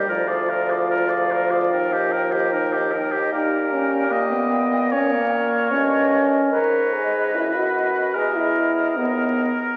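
Solemn and yearning, this slow, rubato romantic movement for wind quintet at 74 BPM in 4/4 finds a pure, softly attacked silver flute carrying the melody with vibrato from the background, while an up-front oboe with light vibrato sings a second line that lingers until 9.8 seconds, a roomy French horn and distant clarinet supply accompaniment, and a clear, present bassoon holds the bass, all heard through a wet scoring-stage reverb on a very old 78 rpm record with vinyl crackle and a dulled top end, in a short passage cut from a longer piece.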